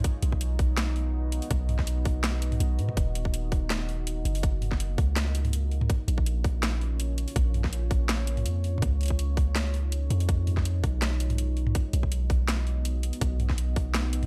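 Half-time drum and bass with a spacious, cinematic mood, where a deep, moody sawtooth pad with a slow attack, chorus and long release holds dark chords from B through Ebm, Bbm and Dbadd9 over a mellow, up-front 808-style sine bass, while an overdriven electronic kit with a cracking snare, bright hats and toms plays alongside a tight, up-front kick that stops at 13.8 seconds, all set in digital ambience.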